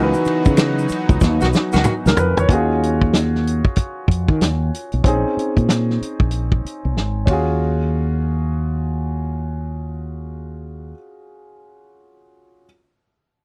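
R&B and neo-soul, introspective and sultry with a swung sixteenth-note feel and cut from a longer piece, where a clear, long-sustaining baby grand piano carries the accompaniment over a round, punchy fretless electric bass with subtle chorus, a lush detuned sawtooth pad sits in the background until 2.5 seconds beside a faint tube shaker and finger snaps, a mid-forward soul drum kit with dark cymbals and a tight kick plays through 7.5 seconds with fills, and a soft-attack jazz horn section lands a brief stab at 1.4 seconds, heard in a close 1970s-style studio recording with little reverb.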